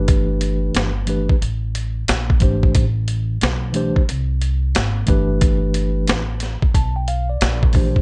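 The beat sits at 90 BPM in 4/4 with a lazy swing on the sixteenths, giving this short jazz-hop cut a relaxed, nocturnal hip hop sway. A boom bap sampler-style kit carries the groove from 0.1 seconds, its thumpy kick, high-tuned snare and hi-hat compressed and gritty with vintage 12-bit sampler crunch. The kit also carries the air of a large room, and it is the loudest part. Underneath, a woody pizzicato upright bass holds the low end on steel strings. A mellow tine electric piano, clean and heard through its built-in speakers, voices warm extended harmonies moving through Gadd9, Bbsus2 and Am9. The overall sound is dry and close, with all three parts up front and a slightly flat tuning of A4 = 439 Hz adding to the mellow, late-night mood.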